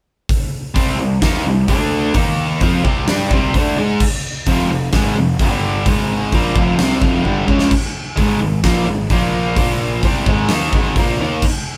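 A hard rock excerpt with an aggressive, driving straight feel, built on a double-tracked overdriven electric guitar riff played up front as power chords move through the progression. A huge, polished arena drum kit with a fat snare, punchy kick and bright cymbals enters at 0.3 seconds and drops a fill at 7.3 seconds, while a growly fuzz bass, overdriven and sitting in the background, fills out the low end. The band sounds like it is playing live in one room with light reverb.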